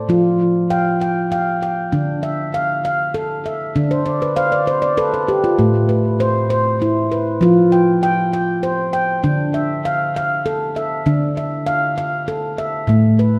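The recording sits in a wet concert-hall reverb with a faint studio ambience, giving the single instrument a spacious halo. A lone handpan carries this gentle, hypnotic world-meditative piece from 0.0 to 13.4 seconds, its nitrided-steel tones ringing and mellow under soft fingertips. Close-miked and up front, the handpan sounds full across its span from A2 to G5, while a diffuse ambient delay trails each note into the room. Moving in an unhurried 6/8, the harmony drifts from Fsus2 through Dm, Am and F5 before returning to Dm and settling on A5. A brief handpan fill between 3.9 and 5.6 seconds adds a touch of motion to this short, trance-like passage cut from a longer performance.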